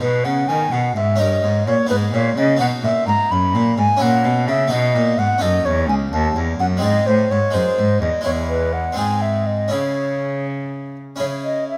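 Closely and finely detailed, with only a light touch of reverb, this grave, introspective baroque-style sonata movement in 6/8 is a brief passage cut from a longer piece. A baroque flute carries the melody with a pure, wooden tone, vibrato and tongued notes, while a full Flemish-style harpsichord with two sets of strings supplies plucked accompaniment. A single bowed cello sits up front on the bass line, its gut-string sound rich, nasal and reedy in period style.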